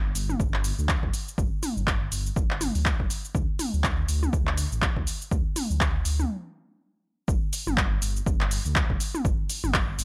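A dark, detuned saw bass opens this hypnotic, earthy afro house excerpt, rumbling deep in the low register with a beating, unison character, tube saturation and a sidechain pumping that makes it breathe. A deep house drum kit follows at once, sitting up front with overdriven handclaps, hi-hat, shaker and toms, while a punchy, layered electronic kick arrives at 0.4 seconds. The groove runs in four with a lilting 16th-note swing that keeps the percussion rolling. A stop from 6.3 seconds briefly breaks the momentum before the drop lands at 7.3 seconds and the track pushes into a new section. The sound is dry and gritty, with a hardware edge and transformer saturation, set in a digital ambience.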